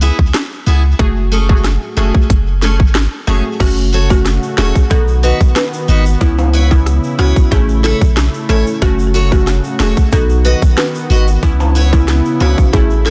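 A deep, punchy sine sub bass with a pitch-drop attack sits up front beside a tight electronic drum kit of sharp snare, dark hats, rim clicks and crashes, driving this hypnotic, tough dancehall excerpt at 92 BPM in a straight 4/4. A bright, full-bodied picked acoustic guitar with finger squeak plays delayed arpeggios from the start, and a glassy, detuned wavetable pluck with chorus and sidechain pumping joins at 1.0 seconds over C#m7 and F#madd9. At 3.6 seconds a dry, woody marimba carries the delayed melody while distant tube shaker and timbales enter, and a smooth sawtooth pad in the background follows at 3.9 seconds, together filling out a F#m, B, C#m7, A cycle in a dense, heavily limited modern mix.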